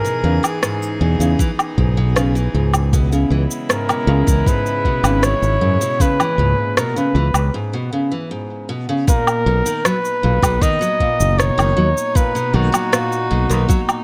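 Light reverb and studio ambience frame this playful, warm folktronica piece at 78 BPM in B major, where a smooth, up-front flugelhorn with light vibrato and tape echo carries the melody over picked steel-string acoustic guitar arpeggios with finger squeak and 12-bit sampler grit, a distant, reedy string quartet holding sustained chords, a bright, growly fingered electric bass, up-front electronic cabasa, woodblock and rim click, and a soft electronic kick entering at 1.4 s, moving from E6 to C#m7 through a break at 7.5 s before settling on Bmaj7 at 9.1 s.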